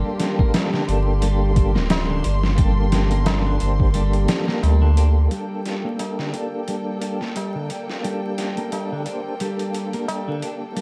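A round, deep sine sub bass sits up front and anchors this brooding, hypnotic trip hop excerpt in G minor at 88 BPM, with a 16th-note swing, before it stops at 5.3 seconds. The sampler-style drum kit is gritty, compressed and pitched down, with a thumpy kick and a medium-tuned snare re-recorded in a large room, and the kick drops out from 3.9 seconds until the bass finishes. A fat, lightly overdriven tonewheel organ with third-harmonic percussion, a stopped rotary speaker, tremolo, sampler grit and tape echo carries the accompaniment. A bright, twangy twelve-string electric guitar picks clean arpeggios through spring reverb and tape echo, and a filter sweep colours its second half. A lush, bowed violin section holds sustained chords with rich vibrato, while a high-tuned, dry tabla with a short ring sits in the background, all wrapped in a dark production with vinyl crackle and digital ambience.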